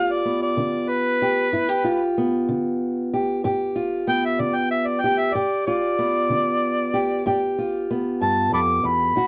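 A harmonica and a fingerpicked acoustic guitar begin together in this short, laid-back fragment of acoustic country blues, rolling along in a swaggering 12/8 over a G7 chord. The harmonica carries the melody as a solo throughout, sitting up front with a warm, jazz-inflected voice, vibrato, tongue slaps and scooped notes. Beneath it, an old ladder-braced guitar, also up front, supplies the accompaniment with a woody, boxy tone and the dark character of old strings. A moderate studio reverb gives the pair a little space. The production is dark and carries a layer of vinyl crackle.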